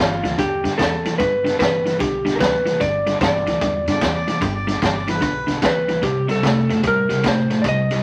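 A rollicking, swaggering electric blues shuffle in G major at 149 BPM opens with an up-front slide guitar carrying the melody in a slightly broken-up, compressed tone, over a bright, picked overdriven guitar riff, a woody, dark upright bass sitting in the background, and a gritty, saturated breakbeat kit with a tight kick and high-tuned snare. From 3.9 to 5.5 seconds a clear, overdriven harmonica adds a jazz-style second line with vibrato and scooped notes, and the harmony moves from G to C5 at 6.0 seconds. Vinyl crackle and a moderate studio reverb colour this short cut from a longer piece.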